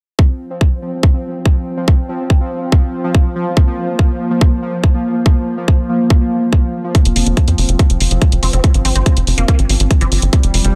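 Alien and driving, this psychedelic trance excerpt at 142 BPM opens with a tight, up-front electronic kick under a pulsing, detuned gated texture holding an F5 chord with chorus and sidechain pumping, before a punchy sawtooth sequencer bass and warm hi-hats join near 7 seconds and a squelchy, resonant blip pluck with phaser and dub echo slips in at 8.4 seconds, all set in light digital ambience.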